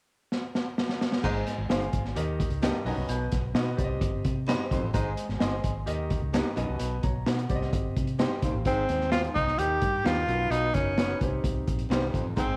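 This joyful, uptempo 1960s-style soul excerpt opens with a gritty, saturated breakbeat drum fill, its punchy kick and dark cymbals up front, before a round, foam-muted electric bass, a vintage grand piano and a mellow baritone saxophone riff enter at 1.2 seconds over a cycling Ab, Eb, B and Cm progression. A slightly broken-up electric guitar adds very quiet, dark picked stabs, and the piano plays a short fill leading into 8.7 seconds, where a breathy, whispered tenor saxophone takes the melody up front with scooped notes and vibrato. A moderate echo chamber reverb lends the whole a roomy glow.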